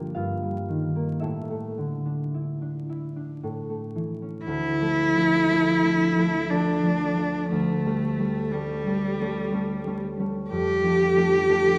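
A concert harp opens alone, its thumb-plucked strings ringing across a span from D2 to Bb5 as it moves from Eb/G through Asus4 to A. This is a solemn, melancholic romantic duo in D minor, cut from a longer piece, moving slowly at 54-62 BPM in a rubato 3/4. At 4.5 seconds the cello enters with the melody, one bowed player with a rich, smooth tone and vibrato, sitting close and up front in the mix over the harp's acoustic accompaniment. The harmony settles on Dm, passes through A7/D and comes to rest on Dm/F as both instruments carry on to the end at 11.8 seconds. The pair is heard from further back in a scoring stage with a wet reverb of 1.8 seconds, and a vinyl crackle gives the sound an aged patina.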